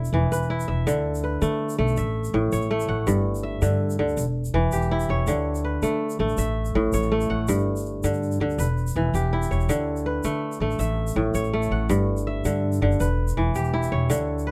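Hypnotic and joyful, this West African traditional piece moves at 109 BPM in a straight 12/8 in D major, and it is cut from a longer performance. The fingerpicked kora sits up front, spinning ringing, crisp arpeggios across its range from the opening second to the close at 14.5 seconds. An acoustic upright bass, played pizzicato on steel strings, gives a woody low foundation beneath it throughout. A grainy, bright egg shaker adds a soft shimmer, captured in a small room and set well back. The harmony circles a simple loop of D5, A, G5 and Em that repeats from 0.9 seconds onward. The production is dark and warm, with little reverb, keeping the sound close and intimate.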